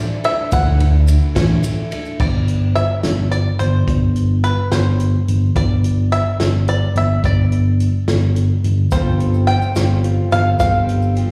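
A twangy, fingerpicked bluegrass banjo carries the melody from the first moment over a shimmering, octave-doubled twelve-string acoustic guitar in this nostalgic, anthemic indie folk excerpt at 71 BPM in a straight 6/8. It is joined almost at once by a natural country drum kit with a punchy kick and medium-tuned snare, a round, dark fingered electric bass up front, and a grainy tube shaker in the background. The twelve-string and shaker drop out by 2.2 seconds, then return at 8.9 seconds alongside a fingerpicked steel-string acoustic guitar with audible finger squeak as the arrangement builds. It is all heard as a live gig through the venue's PA with recital hall reverb, while slapback echo marks the banjo and both acoustic guitars.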